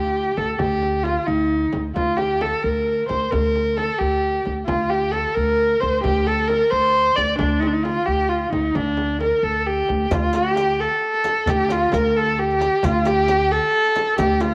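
In a straight 6/8 at 88 BPM, this hypnotic, longing Persian modal piece in D dastgah shur, cut from a longer work, sets a clear, focused bowed kamancheh up front yet distant, singing with vibrato and portamento through a cassette-tape effect over woody pizzicato upright bass and a deep, large frame drum in the background from 0.4 seconds. At 10.1 seconds a soft-handed, close and dry tombak and a riq with dark jingles join in, all framed by a lush hall reverb on a home cassette recording.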